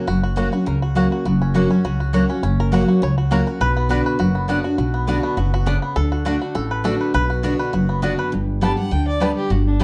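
A dark, warm studio sound with moderate reverb frames this short, lonesome yet driving bluegrass cut in B minor at 204 BPM, moving through F#, Bm, D and G. A bright, twangy five-string banjo, played with fingerpicks and carrying plate reverb, takes the melody from the start alongside a full-bodied picked dreadnought guitar and a woody pizzicato upright bass up front, while a double-strung mandolin adds picked stabs from 0.4 seconds. At 8.3 seconds the solo passes to a distant, bowed fiddle with light vibrato and plate reverb, which enters at 8.6 seconds.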